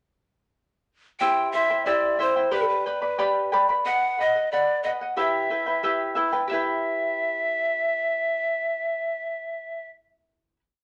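This short Andean folk piece in E minor moves at 91 BPM in a straight 2/4, festive yet melancholic. Up-front cane pan pipes carry a motif-based melody of hook phrases with a breathy, bright tone, vibrato and tongued chiff. A shimmering acoustic charango with double strings accompanies in rhythmic strumming and open chord shapes through C, G, B and Em, reaching a final chord at 6.5 seconds and ringing on until 10.6 seconds in a wet studio reverb.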